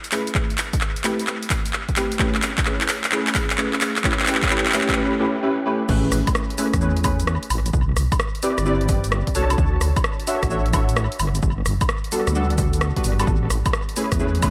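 A deep, detuned wobble bass with chorus arrives at the drop at 5.9 seconds in this sunny, bouncy two-step UK garage excerpt, joining mellow, dark chord stabs shaped by a filter sweep and tape echo, a punchy electronic kick, and a tape-warm house kit of cabasa, crash cymbal, handclaps, hi-hat, rim click and woodblock that plays a drum fill during the build-up, set in an echo-heavy mix with a moderate chamber reverb.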